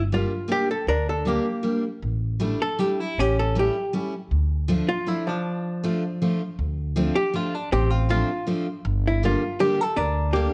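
Nostalgic and whirling, this musette waltz in D minor turns at 158 BPM in a straight 3/4, a short passage cut from a longer piece. A miked, amplified hollow-body archtop guitar carries the melody up front, its clean, compressed tone dark and electric. Beneath it, a picked dreadnought acoustic guitar supplies bright, full-bodied accompaniment from 0.1 seconds, while a pizzicato upright bass with steel strings gives a woody, thumpy foundation. The harmony moves from Gm through A7sus4 and A7 to Dm, reaches a break at 5.5 seconds, then restates the opening section from 6.6 seconds over Dm7 and Gm. Light reverb and the warble of worn old cassette tape, with its pitch drift, lend the sound a faded charm.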